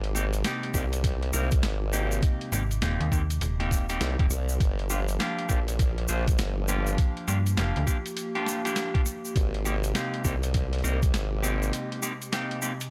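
A formant-sweep wobble bass anchors the low end of this funky, playful glitch hop excerpt, its wobbling sawtooth-and-sine tone sitting up front with chorus over a swung 4/4 groove. A gritty, pitched-down electronic kick drives things with a thumpy weight, joined by a compressed boom bap sampler-style kit of hi-hat, rim click and a high-tuned snare, both carrying studio reverb. A clean, dark electric guitar plays picked stabs that pump with sidechain and trail into tape echo, while a grainy, bright egg shaker stays close and dry. From 2.5 to 7.9 seconds a slap-like FM bass adds a snappy, metallic attack, and throughout, a warbly, nostalgic tape-like pad holds sustained chords in the background, moving between Abmaj7 and Gm7 with chorus, built-in reverb and its own sidechain pumping. The wobble bass stops at 11.7 seconds for a short break, and the whole mix carries a dry, saturated hardware grit.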